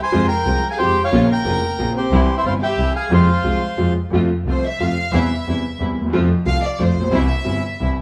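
A dark, reedy bandoneon sits up front with the melody, carrying this dramatic, passionate tango fragment in F harmonic minor until it drops out at 3.9 s. Beneath it, a clear concert grand piano with deep bass and a vintage tint plays the accompaniment, while a bowed double bass, smooth and distant with a touch of vibrato, holds down the low end. A symphonic violin section, pure and floating, traces a second line from the start, then takes over as the solo voice from 4.1 s, when the harmony turns to F major. In the background, a veiled, con sordino studio string section adds soft-attack stabs. The band plays live together in a stone room at 180 BPM in a rubato 3/4, and the wet reverb gives the whole performance a resonant, dramatic space.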